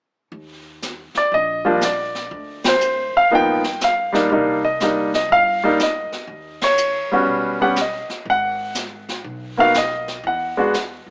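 Sophisticated and swinging, this short jazz piano trio fragment opens at 0.3 seconds with a woody, thumpy upright bass sitting low in the mix and a brushed drum kit with dark cymbals and a high-tuned snare. A baby grand piano, up front with short sustain and a touch of plate reverb, carries the melody from 1.2 seconds over chords that drift through altered dominants to a suspended close. The trio hits shared accents at 2.6 and 6.5 seconds, all set in a modest club room and heard through a small-speaker sound.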